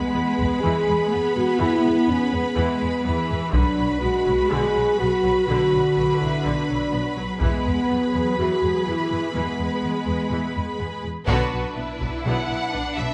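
Heroic and dark, this excerpt of an epic orchestral film score moves at 124 BPM in B dorian, with rich, bowed viola and cello sections and a woody double bass section laying a lush foundation beneath a violin section playing a second line, while a distant, roomy French horn section holds sustained chords until 12.4 s. A taiko ensemble struck with hard sticks punctuates the music in short bursts, and at 11.3 s, with the change to Bm and a full-band accent, a second violin section enters with a smooth, even melody. The whole is set in the reverb of a recital hall.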